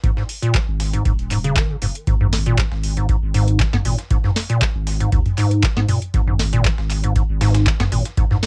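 A squelchy, resonant square-wave acid bass riff with a filter sweep, subtle chorus and cassette tape grit opens this driving acid house excerpt at 118 BPM, together with a deep electronic kick, a booming, dry analog drum machine of crisp snare, metallic hats, handclaps and toms, and a compressed breakbeat sampler-style kit with high-pass filtered hats and snare sitting in the background, before a thick, saturated sine sub bass with sidechain pumping joins at 0.7 s, the whole a light-reverb home cassette recording.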